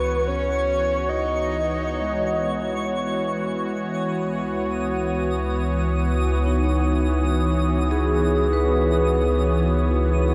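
Serene and melancholic, this ambient fragment in C# minor drifts in free time, cut from a longer piece and resting on a single C#m11 chord. A breathy, flute-like synth lead with lush chorus and tape echo sings a short melody between B4 and D#5, stopping at 3.1 seconds. Beneath it, a smooth, detuned sawtooth pad sits up front with chorus and tremolo, sustaining chords as it fades in over the full 10.3 seconds alongside a metallic, ringing vibraphone whose tape-echoed arpeggios stay in the background. A deep, ominous drone rumbles on a low C#2 up front, while a faint granular layer adds a twinkling, sparkling octave-up shimmer high above. A lush hall reverb with a 2.8-second tail wraps the dark, warm production in a spacious haze.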